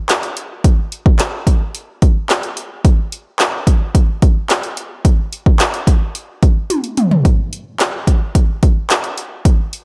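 A deep house drum kit with a punchy kick, woody snare, dark hats, handclaps and toms drives this bittersweet, energetic pop excerpt at 109 BPM in a straight 4/4, sitting up front and dry with a layered, produced electronic sound re-recorded in a small room, and breaking into a drum fill from 6.7 to 7.3 seconds.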